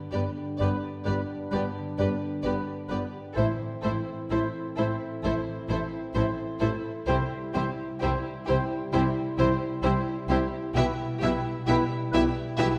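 Hopeful and tender, this cinematic orchestral excerpt unfolds at an unhurried, rubato pace in 4/4, cut from a longer piece. A violin section carries the melody with smooth, lush vibrato, while a second violin line, a mellow large flute ensemble, a distant, roomy oboe and a very quiet clarinet with a smooth top weave supporting lines in the background. A French horn section holds sustained chords and a concert harp rings out fingerpicked arpeggios, as a clear, focused viola section adds accompaniment. Cellos and double basses anchor the bass with rich bowing, the cellos smooth and even, the basses expressive. The harmony moves from G to Am, then C, and settles on Em/B at 10.8 seconds, all bathed in the generous reverb of a scoring stage.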